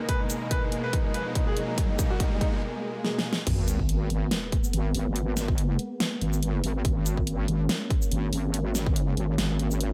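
Chaotic and heavy, this heavy wobble dubstep cut from a longer piece moves at 142 BPM in G# minor, with a swung, half-time feel. It opens on a G#madd9 chord as a clear, boxy grand piano carries a short delayed melody over lush supersaw chords that pump against the sidechain through a low-pass filter, while an ethereal, airy pad with ensemble chorus sits in the background. A riser and drum fills from the big-room dance kit and punchy electronic kick build tension, leading to a brief break with a swell from 2.6 to 3.5 seconds. The drop lands at 3.5 seconds with an impact and sub drop, and a saturated, detuned wobble bass with chorus and overdrive enters up front on a low G#. The huge snare, crash, hi-hat and shaker drive the rest of the section, with the mix kept fairly dry.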